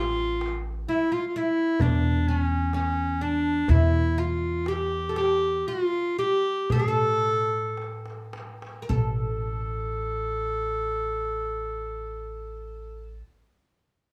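A clear, punchy clarinet leads up front in a classical solo style, carrying a longing, melancholic melody through this short Arabic maqam ensemble piece in hijaz, cut from a longer performance. Alongside it, a woody, plectrum-plucked fretless oud with double strings plays a second line, while a dark, thumpy pizzicato upright bass on gut strings sits up front at the bottom. A darbuka with a clay shell and natural skin, struck with hard hands, sounds distant in a large room, entering at 0.4 seconds and dropping out at 9.4 seconds. The music moves in a straight 10/8, gradually slowing from 0.9 to 8.9 seconds, and a drum fill from 7.8 seconds leads into a new section at 8.9 seconds. A light studio reverb gives the ensemble a gentle sense of space.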